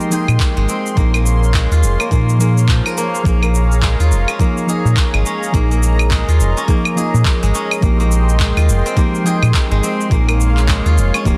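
Organic downtempo in Bb dorian at 105 BPM in 4/4, with a 16th-note swing that gives the groove an earthy, easygoing lean. A steel-string zither played with fingerpicks rings out silvery arpeggios through tape echo, over a deep, mellow chord stab with a fast attack and decaying tail, its dark tone shaped by a filter sweep, moving notch, chorus, phaser and tape echo. Beneath them, a smooth analog pad with a slow attack holds sustained chords. A round analog bass enters at 0.3 seconds, sitting up front in the mix, and a soft, tape-warm electronic kick follows at 0.4 seconds, joining electronic shaker, claves and handclaps that carry a small-room character. Bass, pad and chord stab each breathe with sidechain pumping as the harmony moves from Abmaj7 to Dbmaj7, returns to Abmaj7 at 7.8 seconds and closes on Dbmaj7/Bb, with light reverb and a dense, heavily limited modern master keeping the excerpt close and full.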